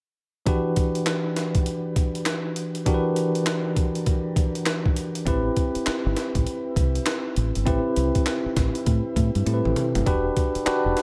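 Lightly reverberant and slick, this punchy new jack swing R&B excerpt pairs an up-front, clean tine electric piano heard through its built-in speakers and bathed in shimmer reverb with a gritty, compressed, pitched-up breakbeat sampler kit of thumpy kick, high-tuned snare, handclaps, hi-hat and toms re-recorded in a large room, while a dark, round, foam-muted fingered dub bass joins at 5.3 s and a drum fill arrives at 9.5 s as the swung groove moves from Em7 to Am7 and back.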